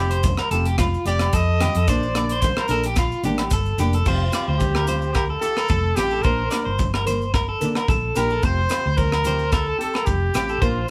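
Highlife guitar band music, sunny and danceable, cut from a longer piece: a clear, close-miked trumpet takes a jazz-style solo up front with light vibrato for the first 4.1 seconds, over a dark, round hollow-body bass, a small fingerpicked nylon-string guitar, a slightly broken-up electric guitar picking arpeggios through tremolo, a tight funk drum kit with crash, hi-hat, kick and rim click, and background maracas, damped congas and ringing agogo bells, the band playing live in one room with moderate reverb and a faint mains hum.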